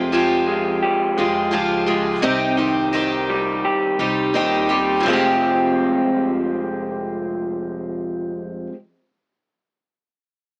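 A picked twelve-string acoustic guitar with a shimmering, octave-doubled parlour sparkle opens up front alongside a slightly broken-up electric guitar riff from a small old amp, while a woody, thumpy pizzicato upright bass sits low beneath them in this wistful, dusty folk and heartland rock excerpt in F minor at 85 BPM, moving from Fmadd9 to Cm and back at 5.0 seconds, all heard through moderate studio reverb with a small-speaker character.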